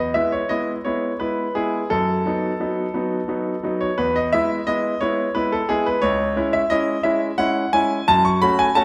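A bright concert grand piano, up front with deep bass and audible action noise, plays this elegant, playful classical-period sonatina fragment alone in E major, moving in 6/8 at 58 BPM with free rubato, its chords passing from E through B7/F# and back to E, then on to C#m and F#m, all set in the wet glow of a recital hall.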